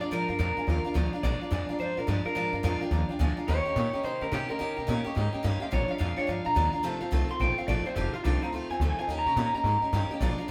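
From the first beat, a rowdy, retro rock band swings at 214 BPM in Bb mixolydian, with a twangy, slightly broken-up electric guitar through a small old amp carrying the melody over a bright dreadnought acoustic guitar and a thumpy, up-front gut-string upright bass, while a vintage upright piano with audible action noise sits in the background, the group playing live in one room with moderate large studio reverb as the chords move through Bb7, Eb7 and F7 in this brief cut from a longer piece.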